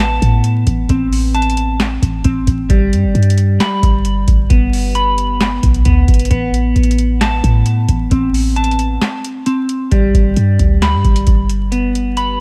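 A half-time trap beat at 133 BPM in 4/4 comes from a booming analog drum machine, with a deep kick, tonal snare, metallic hi-hats and handclaps, a short room on the snare, clap and hats, and a tape-warm character, all sitting up front. Beneath it, a clean, sine-like 808-style bass with a fast attack and decaying tail gives a dark, boomy low end, while a twangy, picked clean electric guitar plays dreamy, wistful arpeggios in G major over Amadd9 and G, colored by subtle chorus, a low-pass filter and digital delay. Vinyl crackle runs through the dry mix, a brief break falls at 9.0 seconds before a new section at 9.9 seconds, and the clip is cut from a longer piece.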